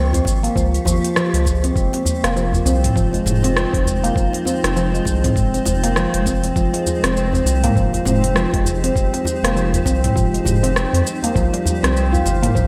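Organic downtempo in F minor at 100 BPM, in 4/4 with a light 16th-note swing, this short passage cut from a longer piece carries an earthy, warm mood. Up front, a ringing handpan with a vintage, band-limited tone plays meditative arpeggios through a low-pass filter and delay, its sharp finger strokes giving the nitrided steel a clear edge. Beneath it, a round, deep analog bass holds sustained, dark notes, while a cloudy granular pad with a slow attack and long release spreads blurred, detuned chords treated with subtle chorus and sidechain pumping. A thumpy, gritty sampler-style kick and a crisp electronic kit of hi-hat, rim click, shaker and toms with gated reverb drive the groove, and a soft-handed djembe sits close and dry in the background; the kick drops out from 10.8 to 11.4 seconds. The harmony moves from Bbm to Fm7 and finally to Cm7, set in a lush hall ambience with a bright 1980s-style digital production.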